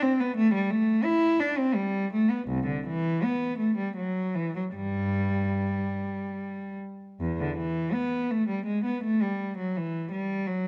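A classical, baroque-style suite movement for unaccompanied cello, this short excerpt from a longer piece carries a grave, introspective mood in a flexible, rubato triple metre. A single bowed cello plays alone throughout, ranging from its deep low register up into its tenor reaches. Its tone is focused and warm, with vibrato and a smooth top end, and it sits up front in the sound. Close, detailed microphones capture the instrument's presence, while a moderate recital hall reverb lends it a sense of space. Around 7.2 seconds the harmony shifts into a minor key, deepening the reflective character before the passage ends at 10.7 seconds.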